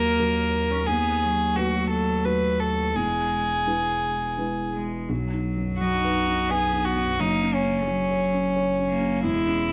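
A light studio reverb surrounds this brief, melancholic and fragile fragment of neoclassical piano and strings, moving at 87 BPM in a rubato 3/4 over chords of D#m, B7/D#, E, B and F#. A single bowed violin, pure and floating, carries the melody up front, while a distant cello, also played sul tasto with a soft attack, shapes a second line beneath it. A felt-muted upright piano supplies boxy, intimate accompaniment with audible action noise, and a saturated sine sub bass holds deep, sustained low notes throughout, with the passage turning to a new section at 5.1 seconds.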